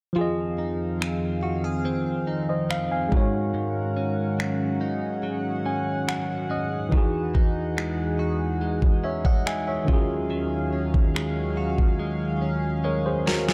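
A dark, softly reverberant production frames this longing, sensual contemporary R&B excerpt at 71 BPM, moving through Fm7, Ab7sus4, Emaj9 and Ebm11. A worn, slightly out-of-tune tine electric piano sits up front and plays a fill from 5.2 to 6.9 seconds over a shimmering, retro pulse-width pad that pumps with sidechain, while a bright, compressed clean electric guitar picks arpeggios through analog chorus and digital delay. At 1.0 seconds a tape-warm electronic drum kit of finger snaps, knocking kick and deep snare enters, closing with a fill from 12.0 to 13.5 seconds.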